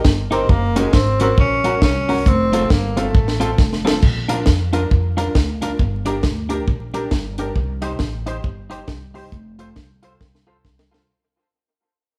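A swung ska groove at 136 BPM in Bb major bounces along on a deep reggae drum kit with a tight kick, high-tuned snare and dark cymbals, joined by a woody pizzicato upright bass and a twangy, clean electric guitar soaked in dub echo, with a short-sustain upright piano adding stabs in the background. A breathy, whispered tenor saxophone carries an intimate melody up front until 3.6 s, when a drum fill ushers in a new section that fades out through 11.1 s. The joyful band sounds live in one large room, with moderate reverb and a layer of vinyl crackle, in this brief cut from a longer piece.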